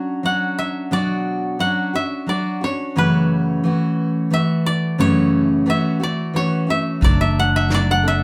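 A live band shares one studio room, with a wet reverb around the players, on this reflective, melancholic acoustic folk fragment in B minor, set at 88 BPM in 3/4 with a straight feel and tuned to A4 = 438 Hz. Up front, a dry, woody koto played with fingerpicks carries the melody high over a picked dreadnought steel-string guitar, whose accompaniment has audible finger squeak as the chords move from Bmadd9 to F#m7. At 7.0 seconds a fingered electric bass, direct and amped, and a distant, roomy brush kit with a punchy kick and medium-tuned snare join under a D/F# chord before the cut.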